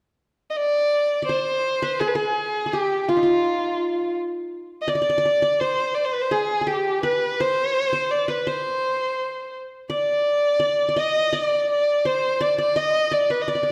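A single bowed violin, dark and woody with a soft attack and vibrato, opens this melancholic, hypnotic Arabic piece in triple time at 0.5 seconds, joined at 1.2 seconds by a plectrum-plucked qanun whose bright-edged triple strings carry a second line, both set up front in a moderate scoring-stage reverb.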